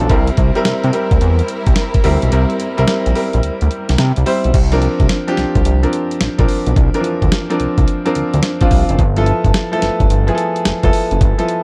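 Confident and slick, this short new jack swing excerpt rides a 108 BPM groove in 4/4 with a 16th-note swing, its dark, dry production keeping a clear, vintage grand piano, a fat, nasal analog bass with a plucky filter and a gritty, compressed sampler-style drum kit with a thumpy kick all up front. Lush, bowed studio strings with vibrato hold chords in the background until 4.5 seconds, and the kick drops out from 2.3 to 4.5 seconds before the harmony moves from C7 to C9sus4 and lands on G13 at 9.0 seconds.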